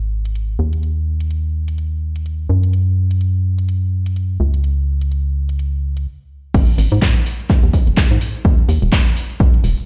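The recording sounds as if it were played on a big sound system in a bare room, with a stone-room reverb and a muffled top end that stops at 8.0 kHz. This euphoric, feel-good piano house excerpt, cut from a longer piece, moves at 126 BPM in 4/4 with a 58% swing on the sixteenths and is tuned to A4 = 442 Hz. It opens on an organ-like FM bass that sits up front between Eb1 and Ab2, hollow and percussive with a fast attack that then decays, its dark tone pumping against the sidechain. At 0.3 seconds a layered, tape-warm house drum kit joins with cabasa, crash cymbal, handclaps and metallic hi-hats. After a brief stop from 6.1 seconds, the drop lands at 6.5 seconds as a punchy analog electronic kick drum comes in up front, carrying the small-room character of its re-recording into the final stretch.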